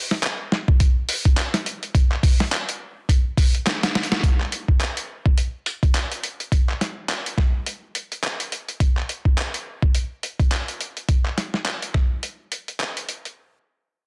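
Dense and heavily limited with a light digital ambience, this funky glitch hop cut swings on up-front, sampler-style drums: a gritty, compressed, pitched-down boom bap kit of handclaps, hi-hat and a medium-tuned snare carries the groove, a thumpy electronic kick joins at 0.7 s, and a drum fill at 3.7 s and a band accent at 4.1 s close the opening drop before the second section.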